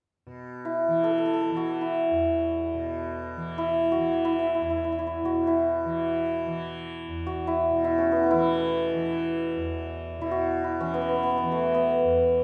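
The recording has the moderate reverb of a recital hall, which gives each note a natural bloom. This serene, radiant passage of Indian classical music unfolds in free time and is cut from a longer piece. A softly plucked tanpura begins at 0.3 s, its bright, buzzing drone sitting low in the balance between E2 and E3. At 0.7 s the santur enters up front with the melody, its hammered strings ringing with a shimmering glow between E3 and A4. The two acoustic instruments carry on together until 12.4 s.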